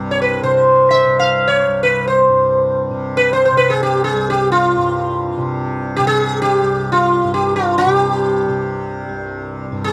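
A dry, close 1970s-style studio recording with light reverb captures this meditative, radiant Hindustani classical passage in free time, cut from a longer piece. A softly plucked acoustic tanpura drone shimmers low in the mix. From 0.1 s, the sitar sits up front, its mellow, round, plectrum-plucked melody glowing with buzzing sympathetic strings.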